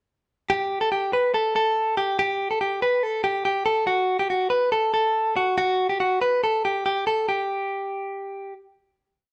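Indie pop at 141 BPM in a straight 4/4, this short, bittersweet and restless piece features a lone clean electric guitar, recorded direct, compressed and up front, playing a ringing picked figure between F#4 and B4 from 0.5 to 8.5 seconds, moving through a bridge before a final note that begins at 7.3 seconds and hangs in a moderate, large studio reverb with a softened, dull top end.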